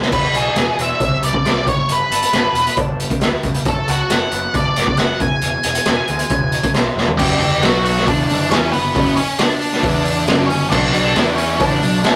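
Quiet-loud alternative rock with a restless, cathartic mood, this rough rehearsal-room recording opens with a scooped, twangy electric guitar playing arpeggios with harmonic tremolo in the background, beneath an up-front octave-fuzz lead guitar melody, a growly fuzz picked electric bass and a boomy, gritty garage drum kit; a drum fill at 7.0 s leads at 7.2 s into a heavier section where the twangy guitar stops, and a very quiet crunchy overdriven guitar and a bright, compressed fuzz guitar take up a riff over G5, B5 and Bm chords.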